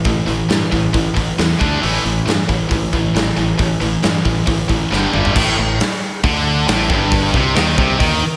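A straight 4/4 pulse at 136 BPM drives this menacing, heavy hard rock excerpt in A minor, cut from a longer piece, with an up-front acoustic drum kit of punchy kick, medium-tuned snare, hi-hat, toms and crash cymbal set in a bright stone room, and a drum fill at 4.9 seconds leading into a new section at 5.4 seconds. Two picked, distorted electric guitars carry the riff, one tight and up front, the other scooped and high-gain, over a bright, direct, fingered electric bass, moving through power chords on A, D and G before settling on A minor. A moderately lush hall reverb and studio ambience give the whole an arena-sized sound.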